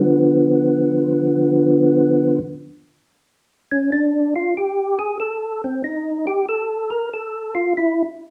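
Jazz at 94 BPM in 4/4 with a swung feel, this bluesy, soulful passage is cut from a longer piece and features a lone tonewheel organ with third-harmonic percussion, heard through a slow rotary speaker and chorus vibrato. The tone is mellow, round and dark, moving between D3 and Bb4. It opens on a Dm6 chord before the organ takes its solo unaccompanied from 2.6 seconds, set in a club reverb that places the listener further back in the room.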